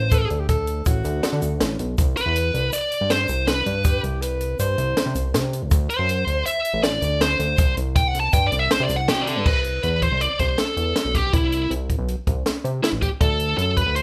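Bright and driving, this excerpt from a longer progressive instrumental piece moves at 160 BPM in 5/4 with a straight feel, centered in C lydian. A dark, distorted high-gain electric guitar sits up front and carries the melody as a picked solo from the start until 9.5 seconds, ranging from E4 to A5 over chords that shift from D to Cmaj7, D7 and C5. Beneath it, a fat analog bass with a nasal, detuned sawtooth tone, ring modulation, saturation and a filter pluck holds the low end, while a compact cocktail drum kit plays dry and natural, with a high-tuned snare, punchy kick, hi-hat and crash cymbal. A breathy alto saxophone with vibrato and a smooth top adds a jazz-style second line only through 5.3 seconds, and a grainy tube shaker sits close and dry in the background until 9.1 seconds. After 9.5 seconds the harmony settles on Cmaj7 before returning to D, all heard as a band playing live in one room with light reverb.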